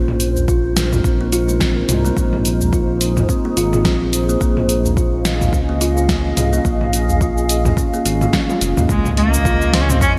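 Earthy and warm, this organic downtempo passage moves at 107 BPM in 4/4 with a 16th-note swing, cut from a longer piece. A blurred, evolving granular cloud pad holds mellow chords under lush chorus and sidechain pumping, while a woody, ringing kalimba plays arpeggios through digital delay and a filter sweep until 8.9 s. A smooth gliding synth bass with portamento pumps beneath, joined by a deep electronic kick and a deep house kit of cabasa, hi-hat, fat snare and toms, tape-toned and soaked in gated reverb, with a distant, very quiet udu in a large room. After a drum fill, a rich, focused cello enters up front at 8.9 s, bowed with vibrato and trailed by delay, alongside a faint electronic impact as the harmony settles from Ab69/Bb and Db/Bb onto Db6. The production is bright and 1980s-styled, set in a lush hall reverb.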